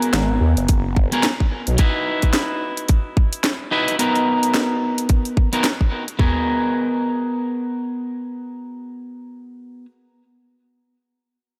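Glitch hop at 109 BPM in G# minor with a swaggering, funky swing, this dreamy, reverb-soaked excerpt pairs twangy, slightly broken-up electric guitar stabs pumping under a diffuse ambient delay with an up-front electronic drum kit of cracking overdriven snare, bright hats, tight kick and toms, while a swirling, thick phased saw bass appears only from 0.1 to 1.8 seconds, and the chords move from G#m9 through Badd11/D# and Bmaj7 before returning to G#m9 at 6.2 seconds.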